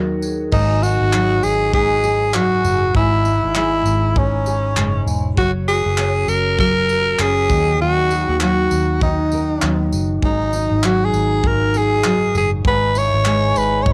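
Wistful and reflective, this short acoustic pop excerpt moves at 99 BPM in 4/4 with a gentle swing on the sixteenths, and it carries the hazy character of a home cassette recording with moderate booth ambience. A ringing, metallic vibraphone note sits in the background for just the first half second, its motor off, coloured by plate reverb and analog delay. A double-tracked nylon-string guitar supplies full-bodied, thumb-plucked accompaniment with audible finger squeak, while a foam-muted fingered electric bass adds a dark, round low end. From 0.2 s a polished studio drum kit joins with a tight kick, crash cymbal, handclaps and tambourine, and at 0.5 s a raspy tenor saxophone takes the up-front solo melody, close-miked and gritty, with vibrato and scooped notes. The harmony cycles through D#m, G#5, C#m/G# and F# before closing on C#m7/G#.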